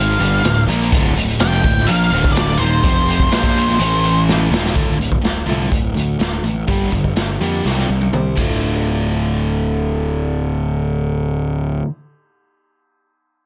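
A straight 4/4 pulse at 124 BPM drives this dark, angsty quiet-loud alternative rock excerpt in D minor, where a gritty, saturated garage drum kit with punchy kick and dull, rolled-off cymbals pumps in a small room alongside an up-front, fuzzed picked bass, a biting overdriven guitar riff and a very quiet, thick fuzz guitar, while a dark octave-fuzz lead melody with slapback echo and plate reverb rings out until 4.2 seconds, a parlour-style plugged-in steel-string acoustic guitar with fresh strings enters at 4.8 seconds with arpeggios in the background, and the drums, after a couple of fills, stop at 8.5 seconds.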